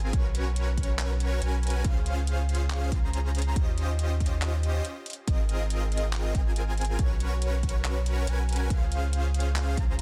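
Future bass at 140 BPM in a half-time 4/4 feel, this playful, lush excerpt is cut from a longer piece and runs as one continuous section over chords moving from Bsus2 through Dbmaj7, Eb13 and Ab69 before circling back. Huge supersaw chords carry the riff, their detuned, bright sawtooth stacks pumping against the sidechain and trailing off into dub echo. Beneath them a thick, triangle-based sub bass sits up front, sustained and deep, spanning Ab1 to Eb2 with the same pumping motion. An airy, dreamy lead plays soft arpeggios in the background, its sine tone shimmering with chorus, vibrato and portamento. A punchy layered electronic kick and a pop drum kit with handclaps and metallic hi-hats drive the groove from 0.1 seconds, all within digital ambience and a dense, heavily limited modern master.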